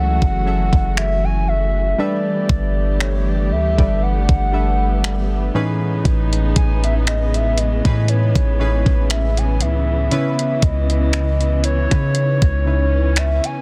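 A deep, boomy 808-style bass sits up front with a crisp, sampler-style drum machine that enters at 0.2 s, its thumpy kick, hi-hat and finger snaps carrying vintage 12-bit grit in this slow, sensual contemporary R&B piece at 59 BPM with a lightly swung 16th feel. Round analog keys with an evolving filter sweep and chorus move through F#m9, G69, Amaj9#11 and C#m7, while a smooth, bowed string section holds sustained chords behind them. Over the top, a hollow, woody synth lead with vibrato, chorus and delay sings a longing melody, all set in digital ambience with a dense, heavily limited modern master.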